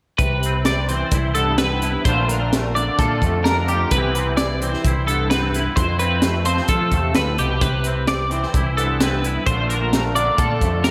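At 0.2 seconds the full band starts together, a snippet of intricate, wistful math rock and midwest emo in a straight 4/4 feel. A bright, clean twelve-string electric guitar sits up front with compressed, twangy arpeggios, colored by analog chorus and analog delay. Beneath it, a fingered electric guitar adds warm accompaniment through an ensemble chorus, while a dark, round picked bass holds the low end with an amped tone. The acoustic fusion kit of hi-hat, kick and snare sounds crisp in a small, pumping room, with a high-tuned snare and a punchy kick. The harmony drifts among Cmaj7, Bbmaj7 and Fmaj7 chords, and the whole mix is soaked in a lush hall reverb that gives it a dreamy haze until it cuts off at 10.9 seconds.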